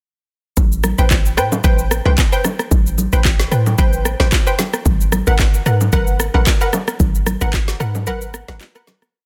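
A late-night and soulful amapiano piece opens at 0.6 s with a round, dark log-drum bass in syncopated, sliding bursts up front, an electronic kit with a deep kick, woody snare, handclaps, steady shaker and syncopated rim clicks, and a soft-handed, vintage-toned conga and bongo pattern set further back. From 1.0 s, short, punchy sawtooth chord stabs with a detuned, plucked edge, chorus and delay ride the swung groove, moving from Am9 to G#m9 at 4.9 s. The dense, heavily limited mix in a digital ambience fades out over the final two seconds.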